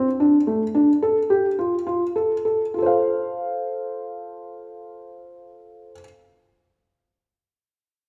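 A felt-muted upright piano opens the recording with arpeggios over an F6 chord, its tone soft, mellow and intimate, with the thin felt and audible action noise sitting up front. This brief contemporary instrumental piece is in F major and moves in 7/8 with a straight feel, counted at 202 to 222 BPM in eighths. The opening passage slows down through its first 2.7 seconds. At 2.7 seconds the harmony settles onto a plain F chord and a second section begins, with the piano continuing until 6.0 seconds. The piano's arpeggios span A3 to F5, and its boxy character sits inside a wet recital hall reverb with a 1.5-second decay that lends the playful mood a shimmering glow. The recording is cut from a longer piece.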